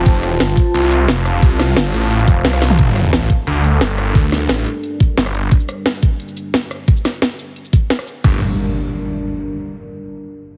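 Futuristic and aggressive, this dark technical drum and bass excerpt at 176 BPM in G minor opens on a drop where a snarling, growling, detuned saw bass and an up-front knocking electronic kick drive beneath a layered kit of cracking snare, metallic hats, rim clicks, shaker, toms and crash, all tape-toned and re-recorded in a small room, while a deep, moody, wave-folded pad with chorus and sidechain pumping sustains chords from F to G minor and takes on a filter sweep from 2.8 seconds, the bass dropping out at 5.5 seconds and zaps, a sub drop and impacts punctuating the heavily compressed, radio-like mix at 2.7 and 8.2 seconds.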